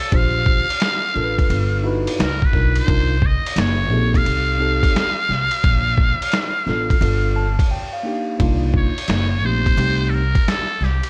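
A buzzy, raspy trumpet with a metal mute carries the melody up front, with vibrato and scooped notes, in this cool, nocturnal jazz-hop cut taken from a longer piece. A woody pizzicato upright bass and a muffled, pitched-down sampler-style drum kit with a thumpy kick drive a swung 16th-note groove, while a mellow tine electric piano plays chords like Cm11 and G7. Around 7.0 seconds the electric piano plays a fill into a short break before a new section begins at 8.4 seconds, all in a dry, close-sounding mix.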